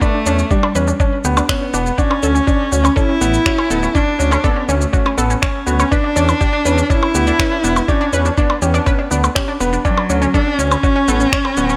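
Intimate and cinematic, this excerpt of piano and strings electronica moves at 122 BPM in E dorian, cycling through Em7, Dmaj7 and E7(no3) chords. A dark, bowed cello carries the melody with vibrato and portamento, over a warm concert grand piano riff with delay and a round analog pluck playing arpeggios with chorus, delay and sidechain pumping. Underneath, a thumpy, muffled electronic kick and overdriven shaker, blips and finger snaps drive the beat, while a rumbling detuned saw bass enters at 0.3 seconds with sidechain pumping, all set in light reverb.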